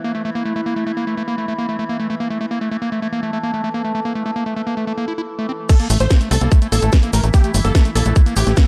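This hypnotic psychedelic trance excerpt at 146 BPM opens on an A5 chord, with a wave-folded drone holding sustained chords beneath a squelchy, gritty acid bass riff. The drone's moving overtones are coloured by chorus, phaser and its own reverb, while the distorted acid bass sits up front and trails dub echo, both parts pumping against a sidechain. At 5.7 seconds the drop arrives: a tight, layered electronic kick lands up front, joined by a garage drum kit with a cracking snare, hi-hat and crash, and a grainy cabasa in the background. A detuned supersaw stab carries a short melody with a filter sweep, phaser and dub echo, and from 5.9 seconds a punchy, nasal sequencer bass drives up front in a low register. The production is dark, warm and dry.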